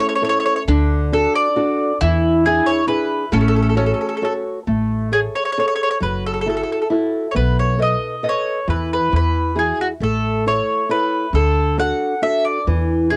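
This home cassette recording captures a wistful, passionate Italian folk serenade in a wet-sounding booth, moving in a straight 3/4 at 135 BPM in A major, cut from a longer piece. An up-front, round-toned picked mandolin carries the melody with a cassette-tape tinge, joined until 4.4 s by a mellow, woody second mandolin, while a small-sounding fingerpicked nylon-string guitar with fresh strings plays the accompaniment, also colored by tape. A dark, growly pizzicato upright bass enters up front at 0.7 s as the harmony moves from A, D and E7 toward Amaj7, F#m7 and B7.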